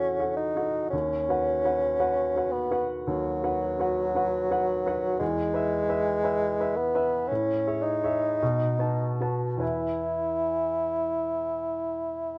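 Romantic classical music for bassoon and baby grand piano, this brief, lyrical passage from a longer piece moves at a slow, rubato 46-58 BPM in 4/4 and settles in E major, tuned slightly low at A4 = 437 Hz. The solo bassoon carries the melody from 0.0 to 12.4 seconds, singing between F#3 and E4 with a warm tone, light vibrato and a classical manner, placed up front. The piano accompanies throughout, its warm, open, long-sustaining sound reaching from D#2 to A5 and also sitting close. The harmony drifts serenely from F#m7/E and B/D# to E, then passes through Amaj7 and B7 before coming home to E at 9.6 seconds. Close, detailed microphones and a touch of light reverb give the duo an intimate, calm presence.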